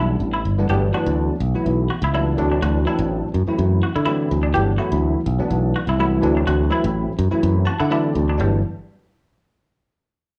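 A lightly swung sixteenth-note groove in 4/4 carries this bright, slick jazz fragment, cut from a longer piece. A punchy, direct fingered electric bass sits up front in the mix and anchors the harmony, which moves between lush Gmaj13 and D9 chords. Over it, a bell-like tine electric piano, clean and given an ensemble chorus, supplies the accompaniment and slips in a short fill from 7.4 to 8.4 seconds. A semi-hollow electric guitar adds warm, scooped stabs, its fingered hollow-body tone treated with analog chorus. A moderate large-studio reverb and small-room ambience give the group a polished sheen before the instruments fall away around 8.6 seconds.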